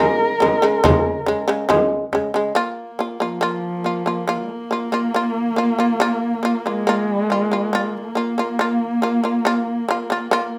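Windswept and vast, this short passage cut from a longer piece of Mongolian folk music moves at an unhurried pace in a straight four-beat feel. A dark, woody horsehead fiddle carries the melody up front, its husky bowed horsehair strings colored by vibrato and portamento. Beside it, a plucked shamisen plays powerful arpeggios throughout, its fretless tone buzzing and percussive. A deep, distant frame drum sounds only briefly, from 0.4 to 2.2 seconds, as if heard in a large room. At 2.6 seconds a second horsehead fiddle enters with a very quiet, focused drone beneath the melody, its rich, husky tone also shaded with vibrato and portamento. The rough home-demo mix sits in a wet studio reverb.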